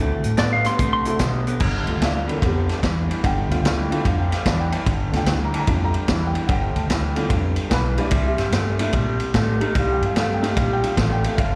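Opening at 0.0 s on a twangy, slightly broken-up electric guitar riff through a small old amp, a round, foam-muted electric bass and a woody, slightly detuned upright piano with audible action noise, this rollicking, swaggering electric blues shuffle soon gains a vintage drum kit with a punchy kick and dark cymbals, while a bright, compressed lap steel slide line flashes by between 0.4 and 1.1 s, with slapback echo on the guitars and piano and the band captured as a live gig through the venue's PA in recital-hall reverb.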